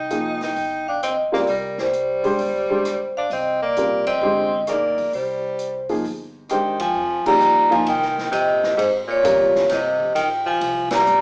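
Swinging in 4/4 at 132 BPM, this intense, cool modal jazz excerpt in C minor, shifting to F minor at 7.0 seconds, sets an up-front, ringing vibraphone with its motor off on the melody above a bright, forceful tenor saxophone with vibrato and scooped notes on a second line, a boxy upright piano accompanying until 9.9 seconds, a woody pizzicato upright bass, and a distant, roomy big-band drum kit with boomy kick, snare, hi-hat, ride and crash, the band heard live in one reverberant room with a small-speaker sound and band accents at 4.0, 6.7, 7.2 and 10.8 seconds.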